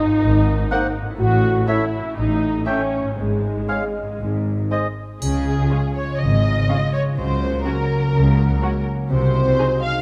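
Mischievous and magical, this playful, whimsical cinematic film cue in Db major moves at 123 BPM in a straight 4/4, with veiled, muted violin sections carrying the melody and a second line over muted violas, close cellos and distant double basses, while ringing harp arpeggios, distant, roomy French horn chords, a warm oboe, a dark clarinet and a background bassoon fill out the texture, and a triangle glints from 5.2 to 6.2 seconds, all set in a concert hall reverb.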